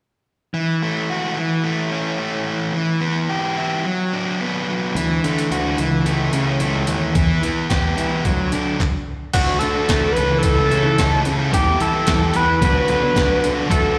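A screaming, sawtooth synth lead with chorus and vibrato cuts in at 9.3 s after a brief stop, crowning a carefree yet wistful indie rock excerpt: a sludgy, dark overdriven guitar riff with slapback echo opens alone, a fuzz-laden picked bass and a gritty, thumpy sampler-style breakbeat kit arrive at 5.0 s, and a bright, twangy twelve-string electric guitar sits in the background, the performance captured live through a venue PA with recital hall reverb.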